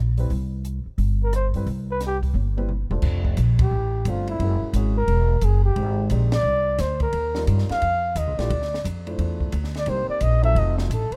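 Playful and relaxed, this brief cut from a longer small-group swing and bop jazz piece moves at 176 BPM in C major, with a warm flugelhorn soloing up front with light vibrato and scooped notes from 1.2 seconds, a woody, growly pizzicato upright bass, a warm grand piano comping underneath, and a dry cocktail drum kit with dark cymbals, a high-tuned snare and a punchy kick that plays a fill at 2.4 seconds before the band hits accents at 3.5 and 6.3 seconds, all heard in a small room with a rough home-demo sound.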